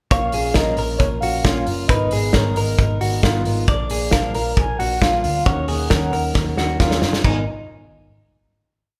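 Jangly indie pop at 135 BPM in G# dorian, a short, bittersweet and wistful piece played by a band live in one room with moderate large studio reverb. A velvety, wave-folded synth lead with chorus and vibrato carries a motif-based melody over a dark, full-bodied fingerpicked steel-string acoustic guitar, a bright, twangy clean electric guitar ringing out arpeggios through spring reverb, and a round, punchy muted electric bass driving eighth notes. An up-front, loose drum kit keeps a dance-floor beat with off-beat open hats, then plays a fill from 6.4 s into a final chord that rings from 7.2 s to 9.0 s.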